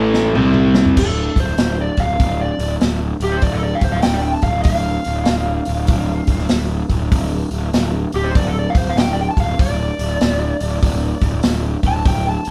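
An overdriven slide guitar carries the melody in this heavy, smoky blues rock and southern rock excerpt, playing a dark, fingered solo in the upper register from 1.0 s to 12.5 s. It's preceded by a biting, double-tracked electric guitar riff, bright and up front, that lasts only the opening second alongside a drum fill, with a C5 chord sounding before the music settles on D minor. Beneath the solo, a fuzz-drenched picked electric bass growls low and forward in the mix throughout. A vintage acoustic drum kit with a punchy kick, medium-tuned snare, toms and dark cymbals rolled off at the top keeps a swung 4/4 pulse at 97 BPM. The band sounds like a power trio playing live together in one small room, with a moderate reverb.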